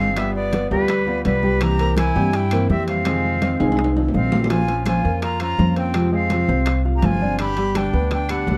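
An airy silver concert flute carries the melody from the first moment, over a punchy trumpet second line set in the background, a full-bodied fingerpicked dreadnought guitar, a worn baby grand piano playing arpeggios with long sustain, and a thumpy, woody pizzicato upright bass up front; thick-skinned congas, round low-tuned bongos, very quiet claves and ringing metal-shell timbales join at 0.2 s, with a drum fill from 3.6 to 4.5 s, in this sultry, danceable Cuban son and guajira excerpt shaped by a dark production and moderate spring reverb.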